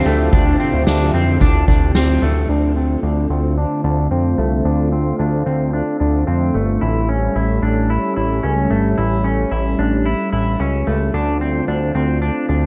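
A lush, warbling unison pad holding sustained chords, twangy, slightly broken-up electric guitar arpeggios drenched in chorus and tape echo, and a fat, detuned analog bass open this hazy, haunting dream pop excerpt in D minor at 111 BPM, while a soft-mallet drum kit with a boomy kick and dark cymbals plays only from 0.1 to 2.3 seconds, after which a filter sweep on the bass runs from 2.5 seconds as the chords move from Dm11 to Dm7, A7 and back to Dm7 under a light studio reverb.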